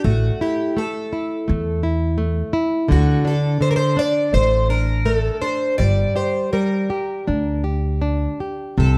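Close, detailed microphones and light reverb frame this nostalgic, tender fado-style ballad excerpt in G harmonic minor at a rubato 83 BPM, tuned to A4 = 438 Hz, where a picked, plugged-in twelve-string acoustic guitar carries a shimmering, octave-doubled melody with subtle chorus and audible finger squeak over a fingerpicked, full-bodied nylon-string guitar and a woody, growly pizzicato upright bass, each part sitting up front as the chords move from A5 to D5 to Gm.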